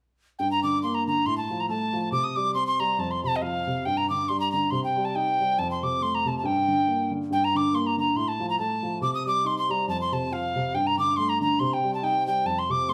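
Spirited and driving, this short Celtic folk passage moves in a lilting two-beat metre with a gentle swing on the eighth notes. A metal tin whistle carries the melody from 0.4 seconds, its pure, tongued tone showing a chiff on the attacks, a touch of vibrato and lifted highs that sit up front. Beneath it, a woody upright piano supplies the accompaniment, also close and present, moving through minor-key changes such as Gm, F/A and Cm, passing through a Gsus2 before returning to Cm near the close. The same strain is heard twice, the second pass beginning at 7.3 seconds. The two players sound as though they are performing live together in one large studio, bathed in a wet reverb that lends the fragment a sense of space until it breaks off at 12.9 seconds.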